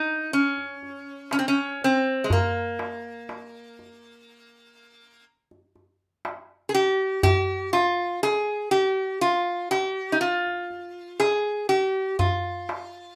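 Hypnotic and melancholic, this brief cut from a longer Arabic maqam ensemble piece moves at 121 BPM in a straight 10/8 in F maqam bayati, tuned to A4 = 443 Hz, with a bright, nasal, metallic resonator slide guitar carrying the melody up front between Ab3 and Ab4 with fingerpicks. A crisp metal-shell darbuka played with soft hands sits lower in the mix from 0.6 s with a small-room sound, and the whole is set in a wet studio reverb with an RT60 of 0.6 s.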